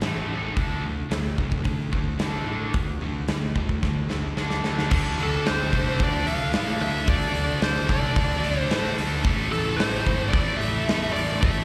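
A straight 4/4 pulse at 111 BPM drives this aggressive, heavy hard rock passage, cut from a longer piece. A huge arena drum kit sits up front with a punchy kick and bright cymbals, under a growly fuzz-picked bass and two slapback-echoed rhythm guitars in the background, one distorted and compressed and one scooped and high-gain, riffing over A5 and D5 chords. After a drum fill at 3.8 seconds, a very quiet double-tracked scooped guitar joins at 4.9 seconds and a biting overdriven lead melody takes the front at 5.2 seconds, all heard as a live gig through the venue's PA with recital-hall reverb.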